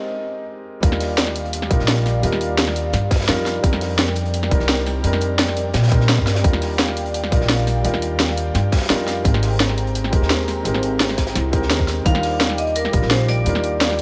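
A ringing, metallic vibraphone note with digital delay opens this lush liquid drum and bass excerpt over a mellow felt-muted upright piano and an airy, breathy pad that pumps softly in the background with chorus and vintage 12-bit grit. At 0.8 seconds the drop arrives: a woody, thumpy pizzicato upright bass and a tight electronic kick sit up front with a cracking drum and bass snare and hi-hats, while a dark, rolled-off breakbeat kit adds crunch further back. The chords drift through rich major-ninth and suspended harmony, and the dark, vibrato-tinged vibraphone returns at 12.1 seconds for the closing melody.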